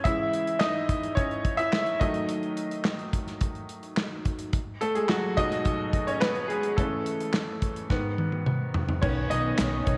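A straight 4/4 pulse at 107 BPM drives this dramatic piano-driven pop passage in C# minor, cut from a longer piece, where a brilliant, slightly detuned upright piano with long sustain sits up front over a dark, tight modern kit of kick, snare, hi-hat, handclaps, toms and crash, whose fill from 7.9 s sets up the entrance at 9.0 s of a woody pizzicato upright bass and a lush, bowed string section with vibrato in the background, all in a moderate echo-chamber reverb.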